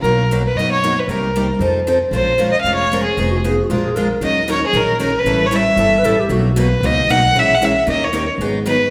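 Bathed in the wet reverb of a church or concert hall, this fiery, virtuosic swing excerpt in the jazz manouche style sets a focused, bowed violin with a smooth top and vibrato up front on the melody, a bright, picked steel-string acoustic guitar with fresh strings and finger squeak on accompaniment, a woody, thumpy pizzicato upright bass on gut strings underneath, and a breathy, whispered clarinet with subtone and scooped notes adding a second line from 3.3 to 6.5 seconds.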